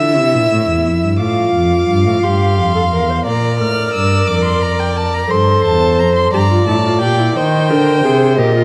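A dark, reverberant scoring-stage sound gives this short passage from a longer baroque-style fugue for string quartet a broad, glowing halo, with a 1.7-second decay trailing each bowed phrase. At 59 BPM in a straight 12/8, counted in dotted quarters, the mood is stately yet lively. The first violin carries the melody high above the ensemble with a soft attack, vibrato and expressive portamento, while the second violin's rich, closely heard tone shapes a second line just beneath it. The viola fills in the accompaniment with a warm, expressive vibrato and its own sliding portamento, and the cello grounds the texture with a smooth, even bass line. All four players sound together from 0.0 to 8.6 seconds as the harmony moves from A minor through B-flat and G minor before settling on E-flat.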